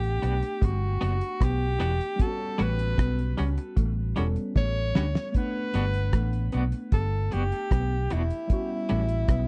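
Lovers rock reggae in G lydian at 76 BPM, this tender, romantic passage cut from a longer piece sets a breathy, subtone tenor saxophone melody with light vibrato, scooped notes and tape echo over a slightly out-of-tune tine electric piano with phaser and slapback echo, moving between Gmaj7 and A13. Up front sit a cloth-damped, thuddy drum kit with a fat snare, tight kick, rim clicks and hi-hat, plus a round, foam-muted fingered electric bass, with a drum fill at 4.6 seconds. A slightly broken-up guitar through a small old amp picks a lo-fi riff with slapback echo in the background, and a twangy, clean electric guitar adds tremolo stabs from 0.2 seconds, all in a dry, close 1970s-style studio sound.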